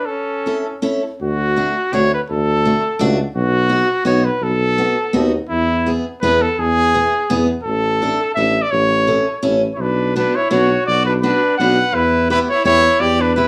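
A small studio room with a touch of reverb frames this bouncy, jolly alpine folk dance in D major, taken from a longer piece and moving at a quick 168 BPM in a lightly swung 3/4. A mellow, up-front trumpet carries the melody with light vibrato and a smooth top. A bright second trumpet adds a brief line at the start and returns at 9.8 seconds. A picked parlour-style steel-string acoustic guitar with fresh strings plays the accompaniment close to the ear, and a warm tuba with its own gentle vibrato enters on bass at 1.2 seconds. The harmony travels through D, B7, E and a suspended A before closing on Bmadd9 and Em.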